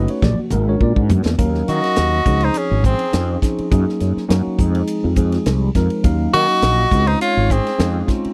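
A clear, jazz-style tenor saxophone with vibrato carries the melody up front from 1.7 s, joined by an airy, reedy concert flute on a soft-attacked second line, in this intense, driving electric jazz fusion passage at 103 BPM in Eb dorian with a light sixteenth-note swing. Underneath, a growly fretless electric bass with ensemble chorus sits prominently beside a tight funk kit with a high-tuned snare whose opening drum fill, from 0.2 s, is joined briefly by hard-hand congas ringing from a distant large room, while a clean tine electric piano with subtle chorus comps through a combo amp over changes such as Ebm9, Dbmaj9, Gb69 and Fm7. The dry, close 1970s-style studio sound keeps the groove immediate in this short cut from a longer piece.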